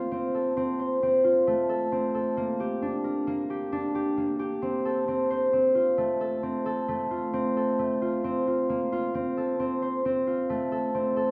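Pensive yet urgent, this contemporary instrumental piece moves at 133 BPM in a straight 5/4, cut from a longer work and lasting about 11.3 seconds. A solo concert harp, mellow and thumb-plucked, rings out up front between A3 and C5, cycling through F, Bb6 and back to F before settling on Bbsus2 at 6.9 seconds. The sound is heard from further back in a recital hall with a wet reverb of 1.7 seconds and a soft, dark top end, with the tuning set to A4 = 439 Hz.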